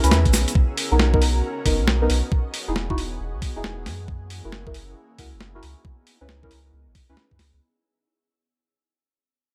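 A swung two-step garage groove at 136 BPM, cut from a longer piece, pairs a knocking, up-front electronic kick entering at 0.3 seconds with a gritty, compressed breakbeat kit of hi-hat and snare, while a grainy tube shaker sounds only in the first half second. A round, soft sub bass anchors soulful, sunny chords moving from C#m7 through Bmaj7, Emaj7 and F#7, voiced by dark, wave-folded stabs with chorus, phaser and tape echo. Behind them an airy, breathy pad and a cloudy, evolving granular pad with built-in reverb pump against the beat as the ambient pad fades out across the whole passage.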